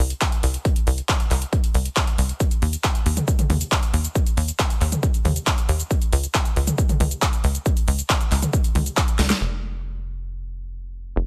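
Euphoric yet bittersweet, this uplifting trance passage drives a punchy electronic kick and a layered big-room dance kit of huge snare, metallic hats, handclaps, shaker and toms against a tight, sawtooth-and-square sequencer bass with a filter pluck and moving notch, the bass and the kit's hats, percussion and toms pumping under sidechain, everything sitting up front with little reverb, until a drum fill at 9.2 seconds gives way to the bass playing alone from 9.4 seconds to 11.3 seconds.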